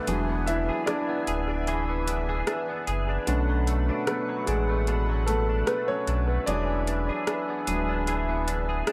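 Moody and late-night, this slow contemporary R&B excerpt at 75 BPM carries a gentle sixteenth-note swing, with a warm, intimate grand piano taking the solo spotlight in a break over E7 and Bm7 chords, its action noise audible and an analog delay trailing its notes. A shimmering, retro pulse-width pad holds sustained chords while a bright, twangy clean electric guitar picks arpeggios through ensemble chorus and delay, and a deep, full sub bass with octave sits up front. A booming analog drum machine with metallic hats and rim clicks echoes through its own delay, a very quiet downlifter sounds until 3.3 s, and the dry, echo-heavy mix keeps it all close.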